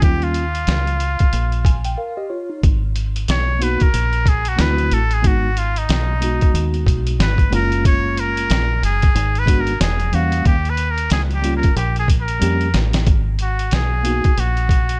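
Dry and close, this smoky, nocturnal jazz-hop fragment sets a nasal, straight-muted trumpet solo with vibrato and scooped notes over a mellow tine electric piano, both touched with plate reverb and the trumpet also with tape echo, while a round, punchy dub bass and a muffled, pitched-down sampler drum kit with a thumpy kick sit up front, the electric piano adding a fill at 1.3 seconds and the drums a fill at 12.4 seconds before a new section arrives.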